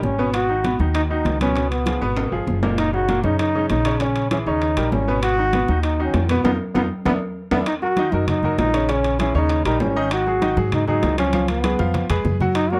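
A punchy, up-front trombone with vibrato carries the solo melody from the start of this driving, passionate salsa excerpt in Eb minor at 196 BPM, backed by brilliant, short-sustained baby grand piano accompaniment, a woody, thumpy pizzicato upright bass, thin-skinned congas sitting in the background and very quiet, round bongos, while ringing metal-shell timbales join at 0.3 s, drum fills punctuate the groove, and the band hits an accent from 6.4 s, captured in a dry, close 1970s-style studio sound.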